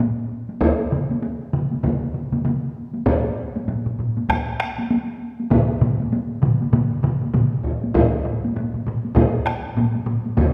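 Japanese traditional taiko drum ensemble music, ceremonial and powerful, moves at 98 BPM in 4/4 with a swung sixteenth-note feel in this excerpt cut from a longer piece. Several taiko ensemble parts struck with hard sticks fill the sound, one close and dry, another distant as if in a large room, a third in a small room, while a solo taiko drums part, also up front with hard sticks, joins at 0.9 seconds. The whole performance rings in a reverberant hall with a 1.8-second decay, and the music shifts into a new section at 7.9 seconds.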